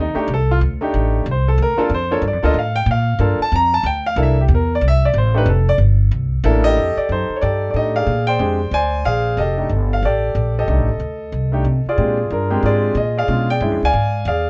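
This jazz piano trio passage, cut from a longer piece, moves at a brisk, swinging clip with a warm, swinging mood. A concert grand piano carries the melody throughout, its tone warm and open, with a deep low end, and it takes a solo over the first 6.8 seconds. An upright bass plays pizzicato underneath the whole way, its steel strings giving a woody, growly bite. Both instruments sit up front, wrapped in a light reverb. The harmony leans on rich dominant colours, opening on a rootless F13 and moving through C13 and Bb13, and a Bdim7 arrives at 13.3 seconds near the close.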